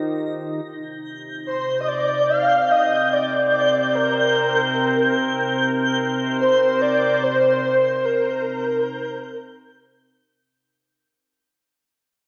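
Ambient music in free time and C minor, this brief, spacious and melancholic passage is cut from a longer piece. An evolving wavetable pad holds sustained chords from the start, its mellow, morphing tone colored by chorus and its own reverb, and it fades in from 0.6 seconds on a Cm7 chord. A twinkling granular texture joins at 1.0 seconds, high and sparkling with an octave-up shimmer. From 1.5 to 9.7 seconds, a breathy, flute-like synth lead carries the melody up front, its soft tone shaped by tremolo, vibrato, ensemble chorus and delay. The whole recording sits in a lush hall reverb with a 2.5-second decay and the worn, warbly pitch drift of old cassette tape, and a fade-out begins at 7.2 seconds.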